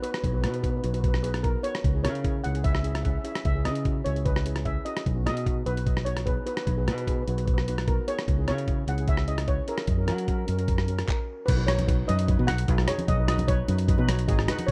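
A straight 4/4 calypso groove at 149 BPM sets a festive, carefree mood in B major, with a gritty, compressed sampler-style drum kit and a thumpy kick driving it. Up front, a warm fingered electric bass joins in. A shimmering steel pan carries the melody through a digital delay over a mellow, soft second pan's accompaniment. Everything breaks for a brief stop at 11.1 s, then very quiet, ringing congas enter at 11.8 s and the pan plays a closing fill at 13.9 s, all heard through the small-room ambience of a rough home demo mix.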